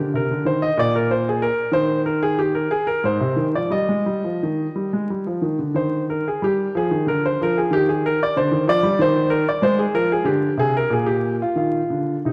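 In a rubato 3/4 at 86-96 BPM, this introspective, grave excerpt of a baroque-style suite movement features a solo grand piano, smooth and vintage with long sustain, set up front in a moderate concert hall reverb and coloured by worn, warbling old tape, vinyl crackle and drifting pitch as it moves through harmonies such as Ebadd11, Dm7b5 and Fm across its 12.3 seconds.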